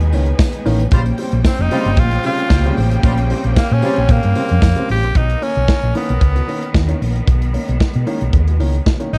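A punchy drum kit and a dark, round hollow-body bass sit up front from the first beat of this driving, danceable disco cut at 113 BPM, joined by clipped baby grand piano chords, lush distant strings and a faint jingly tambourine over Bmaj7 and Bbm69 harmony. Warm horn stabs appear in the background at 0.9 seconds, and at 1.5 seconds a raspy, gritty tenor saxophone takes the melody with a forceful, edgy tone and tape echo. A second string line drops away at 5.1 seconds as the music moves into its next section, leaving the rhythm parts, the sustained string chords and the saxophone to carry the dark production.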